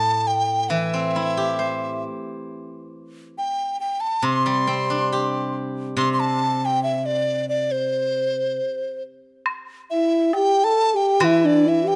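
A graceful, pastoral piece of Chinese traditional chamber music opens with a large dizi carrying the melody, its hollow, airy bamboo tone given a buzzing edge by the membrane and shaded with vibrato and a crisp attack, while a steel-string zither plucked with fingerpicks supports it in silvery, ringing tones. The two play together in a gentle duple metre, and the zither falls away at 8.6 seconds. At 9.5 seconds a new passage begins as a close, bright woodblock enters. Shortly after, at 9.9 seconds, a low xiao joins with a second line, its end-blown sound breathy, tongued and softly mellow, sitting up front and standing as the loudest voice. The zither briefly returns to close the passage, heard through close, detailed microphones with a light touch of reverb in this portion cut from a longer work.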